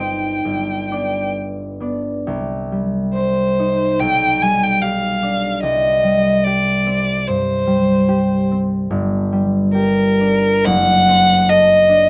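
Rubato in 4/4 at 63-76 BPM, this yearning, elegiac romantic classical excerpt in C minor, tuned to A4 = 439 Hz, pairs a rich, smooth solo violin with bowed vibrato singing the melody between Bb4 and Ab5 over a bright, ringing, thumb-plucked concert harp accompaniment spanning F#1 to D5, both up front in light reverb, moving into a new section at 2.3 s through harmonies such as Cm, G7/B, Gm and D7/F#.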